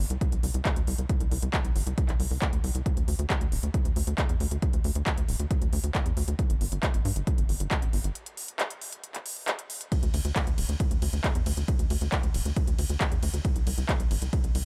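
A dry, close-up mix opens this short cut from an uplifting trance track with a bittersweet, emotional mood and a straight 4/4 drive. A dark, sawtooth-and-square sequencer bass with ring modulation and a plucky filter pumps against the sidechain, while a punchy analog kick sits up front and an overdriven techno kit adds handclaps, smooth hi-hats and ride cymbal. A brief break arrives at 8.2 seconds and lasts until 9.9 seconds.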